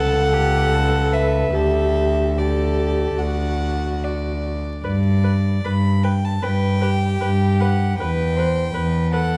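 A rubato 4/4 pulse carries this tender, serene excerpt of a slow romantic string quartet movement: a rich, pure violin melody floats over a warm, airy-bowed second violin, a dark, intimate viola with light vibrato, and a clear, nasal cello bass set up front, all four bowed sul tasto with soft attacks as the harmony moves from A/C# through Dsus4 and D to G and Em, within a moderate recital hall reverb, a dark, warm production and vinyl crackle.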